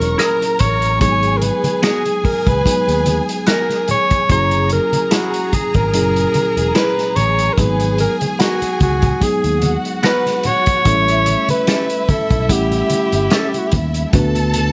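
A gently swung sixteenth-note groove in 4/4 sets an unhurried pace for this silky, bittersweet slice of lush 1970s-style soul, cut from a longer piece. A muffled, lo-fi vintage drum kit sits up front with hi-hat, tight kick, rim click and a medium-tuned snare, while a punchy, amped fingered electric bass anchors the low end, and very quiet, low-tuned congas with thick, damped skins join at 0.4 seconds. A worn, slightly out-of-tune tine electric piano carries the accompaniment through rich extended chords, from F#9 and G#m9 to A7 before landing on D6, and a clean, compressed semi-hollow guitar plays a riff colored by phaser from 0.2 seconds. Behind them, a dark, woody studio string section bows a distant second line with vibrato. Out front, a forceful, jazz-style alto saxophone sings the melody with a smooth top and expressive vibrato until 13.7 seconds, all wrapped in a small room ambience.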